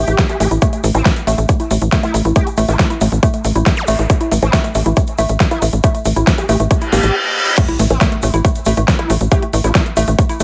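A punchy, overdriven electronic kick sits up front, driving this hypnotic, alien psychedelic trance passage at 138 BPM in 4/4, in A minor and cut from a longer piece. Beneath it, a tight sequencer bass with a ring-modulated, sawtooth edge holds A1, while a woody, wave-folded pluck plays the dark riff between A3 and E4, its chorus, dub echo and sidechain pumping giving it an organic, percussive bounce, and a filter sweep moves across the synth arpeggio through the opening section. Higher up, a nasal, formant-filtered wobble bass carries a saturated second line from C4 to G4, thinned by a high-pass filter and spread with ensemble chorus and dub echo. The layered, overdriven dance kit adds a huge snare, metallic hi-hats and crash cymbal, and a grainy, vintage egg shaker sits in the background. A zap flickers at 3.8 seconds, a reverse cymbal rises from 6.8 seconds, and the drop lands at 7.6 seconds with an impact, all under a light reverb.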